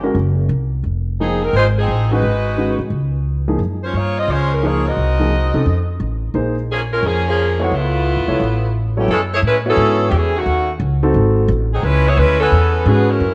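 A saxophone section with roomy vibrato carries the melody in this dramatic, brassy big band swing excerpt, supported by an intimate grand piano with audible action noise and a woody, thumpy pizzicato upright bass, under moderate echo chamber reverb, with a new section beginning at 9.1 s.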